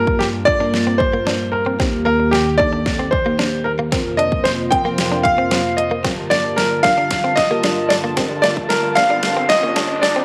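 A clear, slightly worn concert grand piano sits up front, carrying the melody between G4 and G5 with a short sustain and a tape echo trailing its notes. This is a confident, driving dance-pop passage in G minor at 113 BPM in a straight 4/4, cut from a longer piece and built as one continuous build-up over Gm7, Eb, Fsus4 and back to Gm7. Beneath the piano, glassy digital keys and a shimmering, retro pulse-width pad both pump against the sidechain, the keys chorused and mellow in the background while the pad spreads sustained chords from Eb2 to A5 with a soft attack and long release. A bright, direct-recorded clean electric guitar, picked and compressed with a subtle chorus, plays a compact riff between Bb3 and D4, and an electronic pop drum kit with a punchy kick and deep snare runs a fill across the whole passage from 0.1 seconds. A filter sweep shapes the build throughout, a background riser enters at 8.2 seconds, and the mix sits in a moderate spring reverb with a high-pass filter.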